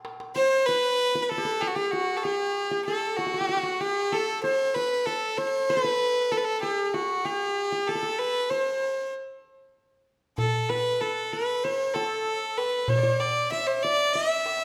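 A brief darbuka fill opens this stately Arabic maqam ensemble piece at 96 BPM in a straight 4/4, cut from a longer performance in maqam rast on A. At 0.4 seconds a single close, biting violin takes the melody, its nasal, earthy bowed tone sitting up front and carrying a passionate intensity. Alongside it, a qanun played with fingerpicks traces a second line in the same register, its triple strings giving a bright-edged shimmer at a lower level. The crisp metal-shell darbuka, played with soft hands, returns at 10.4 seconds and stays to the close, adding a live-room snap to the ensemble. A moderate reverb lends the whole group the spacious bloom of a scoring stage.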